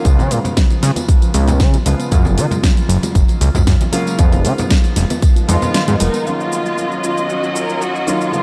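A fat, detuned analog bass sits up front in this sensual, sleek nu-disco excerpt at 116 BPM in Eb minor, joined by a punchy layered electronic kick, a pop kit with hi-hat, shaker and a fat snare, and ringing tambourine and congas set back in a small room. A dark, mellow baby grand piano with lush chorus, low-pass filtering and analog delay carries the chords over Db7, Gbmaj9 and Fm7b5, while a very quiet, round pluck adds soft nasal arpeggios. An expressive dark violin section with portamento and delay takes the melody at 5.5 s, the kick drops out at 5.7 s, and a biting, focused string section enters at 6.2 s with sidechain pumping as the piano gets a filter sweep over Ebm9, all bathed in dreamy cathedral reverb.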